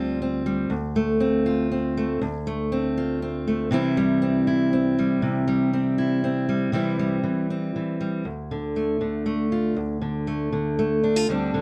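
A fingerpicked steel-string acoustic guitar plays alone up front in this wistful, melancholic folk excerpt in D minor, moving in 3/4 at 119 BPM through chords from Csus2/D and F/D to C before settling on D5 at 8.3 seconds, its warm tone set in a dark production with a modest small-room reverb.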